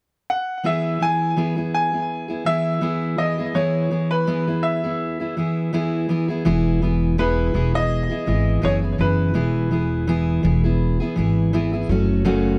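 A bright upright piano opens the recording at 0.3 seconds, carrying a brilliant, woody melody in its upper middle register with a touch of delay. A fingerpicked steel-string acoustic guitar follows almost at once, its full-bodied dreadnought tone supplying the accompaniment over a sunny E major. This acoustic pop cut from a longer piece moves at a relaxed 83 BPM in 4/4 with a light swing on the sixteenths, giving it a carefree lilt. At 6.5 seconds an upright bass enters low and pizzicato, adding a woody, steel-strung pulse as the music shifts into a new section. The chords settle on E for most of the passage before turning to F#m near the end, and the piano drops out at 11.1 seconds. All three instruments sit up front in a moderate studio room, within a dark, warm production.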